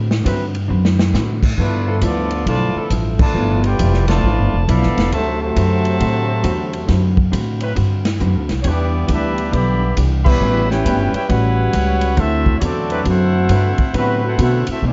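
Opening on a clear trumpet section carrying the melody over a mellow trombone section's second line, woody pizzicato upright bass up front, a hollow-body jazz guitar comping in the background and a second trombone section holding sustained chords, this brassy, joyful big band swing excerpt in D major rides a swinging drum kit with a punchy kick at 136 BPM, marked by a drum fill near 0.7 seconds and band accents at 3.1 and 10.2 seconds, all wrapped in a dark production with light reverb.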